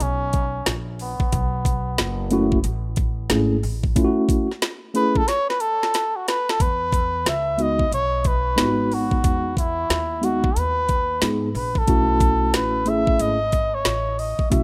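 A cup-muted trumpet opens this cool, relaxed jazz-hop piece with a veiled, breathy solo, light vibrato and tape echo, over pizzicato upright bass with a woody tone and an overdriven, up-front garage drum kit with knocking kick and metallic hats that plays a fill from 5.3 to 6.6 seconds. A clean, mellow tine electric piano enters at 2.3 seconds as the swung groove moves from B9sus4 to Emaj9 and back. The small-room ambience and rough home-demo mix give the track a loose, close-up feel.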